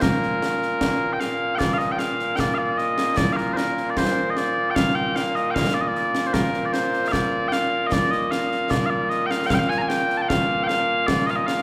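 A straight 2/4 pulse at 76 BPM carries this proud, stirring piece of Scottish traditional pipe music in Bb major, cut from a longer performance. Mellow small bagpipes hold the melody from the start to 11.6 seconds, their sweet, continuous solo voice sitting up front and ranging from Bb2 to Bb5. Concert snare drum and concert bass drum play throughout beneath the pipes, an acoustic kit heard in a live room, up front, with bright cymbals. A short opening phrase of about 1.6 seconds gives way to a longer restatement of the same material. The church or concert hall setting lends a wet recital-hall reverb that lingers around each note, decaying over about 1.7 seconds.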